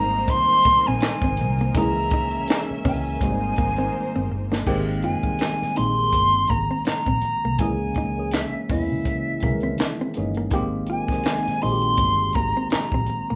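A relaxed 4/4 groove at 82 BPM with a lightly swung sixteenth feel sets up this smooth R&B and neo-soul excerpt in Ab major. A pure, expressive silver flute with vibrato carries the melody up front over a clean hollow-body jazz guitar line, a worn, slightly out-of-tune tine electric piano through a phaser, a round foam-muted electric bass and a dark, compact cocktail kit with a high-tuned snare, hi-hat, handclaps and crash. Veiled, con sordino strings hold lush chords until 4.7 seconds, just as a drum fill wraps up, and the whole thing has the rough feel of a home demo in a small room, with chords moving between Abmaj9 and Dbm6.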